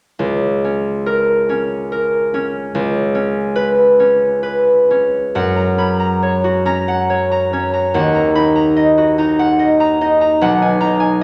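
A concert harp enters alone at 0.2 seconds, its ringing, fingerpicked tones placed up front in a wet recital hall whose reverb lets each note linger in the air. This short passage, cut from a longer classical solo harp piece, is serene and dreamy, moving in a gentle three-beat metre with a freely breathing rubato. The harmony opens on A#m over C# and shifts to Bsus2 over C#, giving the start a suspended, floating quality. At 5.3 seconds a new section arrives on F#, then passes through D#m before coming to rest on G#m7 over B as the passage closes at 11.2 seconds. The instrument ranges from B1 up to B5, and its acoustic, warm sound fills the hall with a calm glow.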